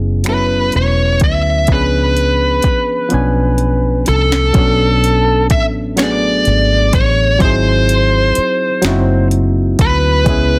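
Densely mastered with light reverb, this sultry, yearning slow R&B excerpt in 6/8 at 42 BPM sets a dark, overdriven lead guitar with slapback echo and plate reverb over a barky, reedy electric piano, a round, foam-muted fingered bass and a produced drum kit pushed into overdrive, with finger snaps, hi-hat, a soft kick and a sharp snare, which plays a fill from 3.1 to 4.5 seconds, while across the excerpt the chords move from E6 through C#7b9 to Bm7 and G#7b13.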